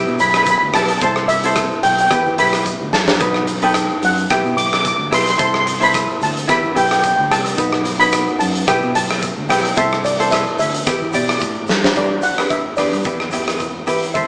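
A shimmering, metallic steel pan carries the lead melody in this moody, cool calypso excerpt, its mellow tone struck with medium rubber sticks and framed in a boxy small-room sound. Beneath it, a light fingerpicked ukulele supplies acoustic accompaniment, while a fingered electric bass sits low with a warm, direct and amped tone. A huge arena drum kit sits up front with a punchy kick, a medium-tuned snare, hi-hat and rim clicks, adding fills at 2.9 and 11.7 seconds. A grainy tube shaker, very quiet, enters just after the start. The groove has a slight swing on the sixteenths over a minor-key progression that turns to a brief new section at 12.0 seconds. The whole band plays live in one room, with a wet stone-room reverb and a small-speaker sound.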